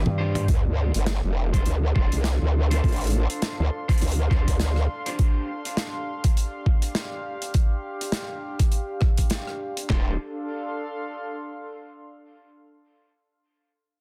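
A short drum fill on the modern studio kit's toms, snare and rim clicks opens this gritty, funky glitch hop excerpt, alongside a growling, wobbling growl bass and a warbling, nostalgic tape-like pad. Set in D minor at 102 BPM with a swung 16th-note feel, the music settles at 0.5 seconds onto Dm7 and later moves to G7sus4, as an overdriven boom bap sampler-style kit enters with a thumpy kick, handclaps and a medium-tuned snare, sitting up front with a compressed, small-room grit. A bright, punchy slap bass with an envelope filter makes a brief appearance on G2 near the start, while a dark, slightly broken-up electric guitar adds picked stabs treated with subtle chorus, delay and sidechain pumping. The saturated, formant-filtered growl bass dominates the low end through the first half and returns briefly near 9.9 seconds, when the harmony comes back to Dm7. Throughout, the lo-fi, detuned sawtooth-and-triangle pad pumps beneath everything with chorus and its own reverb, lingering alone until 12.2 seconds in a dense, heavily limited modern mix.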